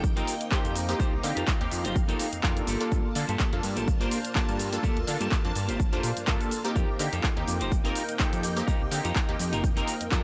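A punchy, overdriven electronic kick sits up front in this funky, nostalgic piece of filtered disco house at 125 BPM in 4/4, with 55% swing on the sixteenths, and it runs through the full 10.2 seconds of this cut from a longer track. Beside it, a house kit of handclaps, hi-hat and shaker carries its own overdrive and the same large-room character, with sidechain pumping on its hats, percussion and cymbals. A fat, detuned sawtooth analog bass with saturation and a filter pluck holds the low end. Above it, a bright, wave-folded polysynth comps with chorus, phaser, a filter sweep and gritty vintage 12-bit sampler texture. A clean, twangy picked electric guitar plays a riff, while a lush string machine with a sub octave, soft attack, phaser and ensemble chorus sustains chords in the background, and the bass, polysynth, guitar and strings all carry sidechain pumping. The harmony moves from F9sus4 to Gm9 at 2.7 seconds and back to F9sus4 at 6.8 seconds, set inside a digital ambience.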